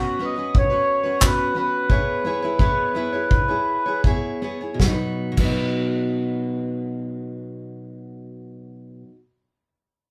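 A reedy, mellow accordion carries the melody up front until 4.0 seconds in this sunny, carefree acoustic pop excerpt, over a full-bodied picked jumbo steel-string guitar that rings on to 9.2 seconds and an unplugged drum kit of punchy kick, medium-tuned snare played with bundle sticks, handclaps and crash cymbal, all captured as a band playing live in one studio room with moderate reverb while the pace slows through the opening 4.8 seconds.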